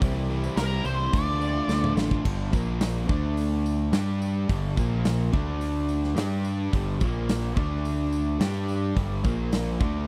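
A gritty, brooding classic rock excerpt opens with three riffing guitars in the background: one biting, one crunchy and overdriven, and a double-tracked fuzz guitar. Beneath them sit a growling picked bass with overdrive and a big acoustic drum kit up front, with a punchy kick, a medium-tuned snare and a bright stone-room sound, while a jingly tambourine stays tucked behind. A dark octave-fuzz lead guitar with wah and tape echo cuts in from 0.6 to 1.9 seconds, and a drum fill at 1.7 seconds leads into a new section at 2.3 seconds, all captured with a dry, close 1970s-style studio sound.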